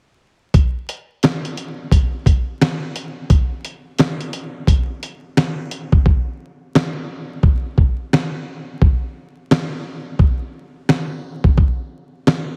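Hip hop drum excerpt with a gritty, reflective mood, where a dusty, sampler-style kit sits up front with a thumpy kick, medium-tuned snare and hi-hat, its tape-warm tone carrying the air of a large room, light reverb, vinyl crackle and a heavily compressed radio sound, all riding a swung 16th-note feel until the hi-hats drop out at 6.1 seconds, leaving kick and snare to play on through 12.5 seconds.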